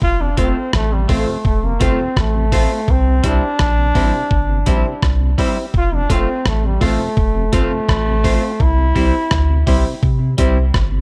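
A light, small-room reverb gives this short roots reggae excerpt a close, intimate sound, and the mood is laid-back and warm. A bright, punchy trombone carries the melody up front, its scooped notes sounding roomy and a touch distant under a dub echo. Beneath it, a deep, round sub bass holds the low end while a gritty, compressed sampler-style drum kit with a thumpy kick, hi-hat and rim click sits forward with a tape-warm character. A clean, picked semi-hollow electric guitar, also treated with dub echo, joins at 0.4 seconds alongside concert grand piano stabs tucked into the background. A very quiet tonewheel organ with vibrato fills in the harmony as the chords move between F and C.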